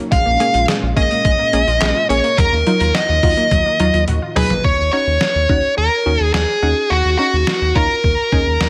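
A short, nocturnal and cool synth-pop passage cut from a longer piece opens on a round, full-bodied analog pluck with chorus, heard together with a mellow, vintage string machine voicing cellos through ensemble chorus in the background and a lush, detuned unison pluck playing arpeggios through delay. Almost at once a dark, overdriven electric lead guitar takes the melody up front, picked and smooth, over a deep, round analog bass and a gritty, pitched-down trip hop drum kit of handclaps, hi-hat, thumpy kick, snare and toms, itself compressed and overdriven. The harmony moves from Bbm7 to Ebmadd9, and a drum fill at 4.1 seconds leads into the second part. At 4.6 seconds the strings and arpeggiated pluck drop away as the chord settles on Ebm7, leaving the guitar, bass, drums and chorused pluck to carry on. A light reverb gives the whole a soft sense of space.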